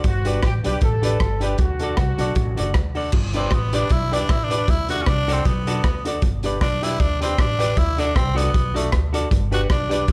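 A lightly swung ska beat from a gritty, up-front garage drum kit with a boomy kick drives this joyful, cheerful fragment, as woody pizzicato upright bass and a dark, clean semi-hollow guitar in the background sit beneath brilliant upright piano stabs, while a clear, tight horn section carries the opening melody until 2.7 seconds and a raspy, growling tenor saxophone solo steps forward from 3.4 seconds, both horn parts and the piano touched with slapback echo in a small, lightly reverberant room.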